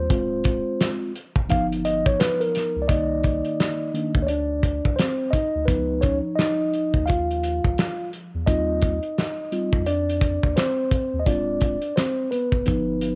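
A mellow tine electric piano leads this cool, smoky jazz-hop piece, playing solo lines up front with a clean, direct tone colored by cassette tape. Beneath it, a soft dub sub bass holds a deep, round, sustained low end with a quick attack. A cloth-damped, thuddy acoustic drum kit enters at 0.1 s with hi-hat, a tight kick and a fat snare, its rolled-off top and cassette tape character sitting close in a small room. The groove has a relaxed swing in a steady four, and the harmony moves from Dm7b5 and Gaug7 into Cm9 at 2.9 s, where a new section begins and drifts through Db9 and Eb6 before returning to Dm7b5. Light reverb and a homespun studio ambience give this short excerpt from a longer piece a lo-fi feel.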